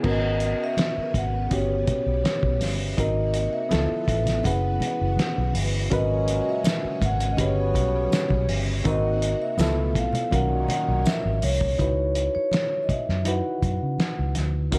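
Lush 1970s-style soul at 82 BPM in C# dorian, cinematic and silky, where a mellow soft-mallet vibraphone melody floats over a barky, lightly overdriven reed electric piano, a muffled cloth-damped drum kit with a fat snare, a round foam-muted fingered bass up front, shimmering string-machine violins in the background until 11.8 s, very quiet damped congas, and a bright trombone section with light vibrato adding background stabs from 5.9 s, joined by a jingly tambourine at 6.6 s, all in a dark, lightly reverberant production that sounds cut from a longer piece.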